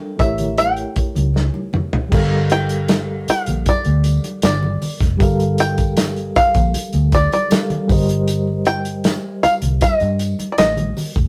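A rough rehearsal-room recording with warm saturation and light reverb carries this silky, bittersweet fragment of lush 1970s-style soul in G minor at 78 BPM, where a twangy, fingerpicked bluegrass banjo sits up front on the melody over a reedy electric piano with fast tremolo, a round, foam-muted vintage bass, a dry, damped 70s drum kit with dark cymbals that plays a fill from 1.4 to 2.1 s, bright congas in the background, and a very quiet, jingly tambourine entering at 2.1 s as the harmony moves from A7b9 to Gm7 and then Cm7/G.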